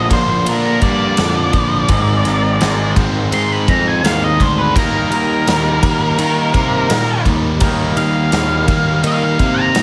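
A dry, close-sounding slice of sunny, swaggering classic rock, built around a dark, distorted octave-fuzz lead guitar solo over picked riffs from an overdriven cranked stack guitar and a crunchy overdriven guitar in the background, a growly fuzz picked electric bass, and a big, up-front rock drum kit with bright cymbals and a punchy kick, while a lush, vintage string machine ensemble slips in barely audible at 4.8 s.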